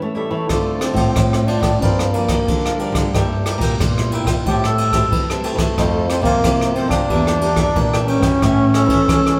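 A fragment from a longer samba and choro piece opens on a crisp, picked cavaquinho and a fingerpicked nylon-string guitar with fresh strings, both set in the background, while a second classical guitar carries the bass line with audible finger squeak. A trombone takes the melody straight away with vibrato and scooped jazz-style notes, and just after, an up-front brush kit joins with a boomy kick, dark ride cymbal and rim clicks, keeping a straight 91 BPM pulse in 4/4. At 3.5 seconds a mellow, distant clarinet adds a classical-style second line. The band plays live together in a large, reverberant studio room with a faint mains hum, and the mood feels lively and nostalgic.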